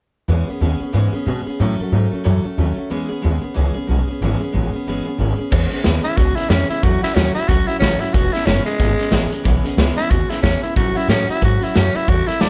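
Rockabilly at a brisk 183 BPM in E major with a swung feel, rowdy and upbeat, cut from a longer piece. A bright, full-bodied picked acoustic guitar with audible finger squeak and a woody, thumpy pizzicato upright bass open together over E6 and A6 chords, before a vintage drum kit with a punchy kick and dark cymbals comes in at 5.5 seconds. At 6.0 seconds a raspy, growling tenor saxophone takes the melody up front with light vibrato and tape echo, all set in light reverb.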